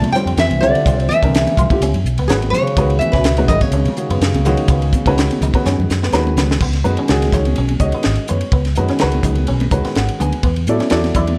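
A swung sixteenth-note groove at 125 BPM in 4/4 drives this nocturnal electric jazz fusion excerpt in C# minor, moving through suspended ninth chords. A crisp, airy drum kit with a high-tuned snare and tight kick sits up front over a round, punchy fingered electric bass, while bright, hard-handed congas add a damped, saturated layer in the background. A full-bodied nylon-string guitar carries the fingerpicked melody with finger squeak and a slapback echo, shadowed by a subtoned bass clarinet with light vibrato and scooped notes as a second line, until both stop at 6.1 seconds. Just before that, a drum fill starting at 5.7 seconds leads into the next section. A worn, intimate baby grand piano with audible action noise and short sustain accompanies throughout and takes a fill at 9.5 seconds, as a twangy, chorused clean electric guitar punctuates with compressed stabs in the background. The production is dark, with light reverb.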